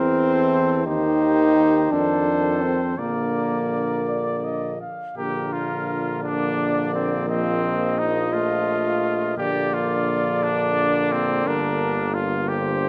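Classical brass quintet music in Bb major, this excerpt moves at a stately, rubato 57 BPM in 6/8, with a triumphant air. A warm trumpet carries the melody with light vibrato and a smooth top, while a mellow second trumpet, also lightly vibrato, sings a line set higher in range above it. The clear French horn stands most forward in the accompaniment, joined by a distant, roomy trombone sitting in the background, and a tuba with a vintage tint and light vibrato anchors the bass. All five parts play throughout, shifting from a first section into a second at 5.2 seconds as the harmony moves from C7 through F7 to settle on Bb and finally Gm. A moderate recital hall reverb lends the ensemble a resonant, ceremonial glow.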